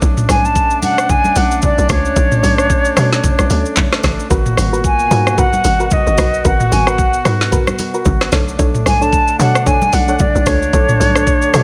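Late-night and deep, this amapiano groove moves at 112 BPM in 4/4 with a loose 16th-note swing, cut from a longer piece. A hollow, bouncy log drum bass and an up-front R&B drum kit, with its knocking kick, woody snare, handclaps, rim clicks, shaker, hi-hat and toms, run from the very start alongside a brass ensemble holding smooth, classical-style sustained chords. At 0.3 seconds a mellow silver concert flute takes the melody, airy and soft-edged with vibrato and a touch of delay, while ringing congas sit close and dry in the background. From 4.3 seconds a soft, round pluck adds dark, chorused stabs with delay. The harmony moves from Bm9 to G#m9 and back to Bm9, and the mix stays dry with little reverb.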